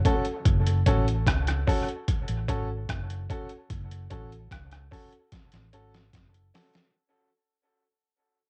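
A steady, straight 4/4 pulse anchors this short, meditative dub reggae fragment, cut from a longer piece and fading out across its whole length while sitting on a single F# minor chord. The trip hop sampler-style drum kit sits up front with a gritty, pitched-down character, its thumpy kick, medium-tuned snare, rim click and hi-hat compressed and overdriven as if re-recorded in a small room, and a drum fill runs from 5.3 seconds to the close. Underneath, a vintage muted fingered electric bass enters at 0.5 seconds with a dark, round, foam-muted tone, holding the low register up front. A bright upright piano plays stabs in the middle register, its woody, slightly detuned sound worn by cassette tape and trailed by dub echo and plate reverb. The whole has the hypnotic, homemade feel of a cassette recording in a lightly reverberant space.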